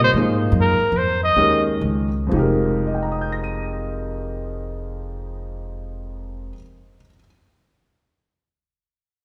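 A clear, vintage-toned trumpet with vibrato opens this brief modal jazz excerpt, playing a short solo melody up front before falling silent at 1.6 seconds. In 3/4 with a swung feel, the music carries a spiritual, cool mood and slows down across its opening stretch. A warm concert grand piano supplies the accompaniment, intimate and natural with deep bass and audible action noise, sounding until 7.2 seconds. An upright bass, woody and plucked on steel strings, holds the low end until 6.5 seconds. The harmony moves from Bbm11 to Fm11 at 2.3 seconds, all set within the wet bloom of a concert hall reverb.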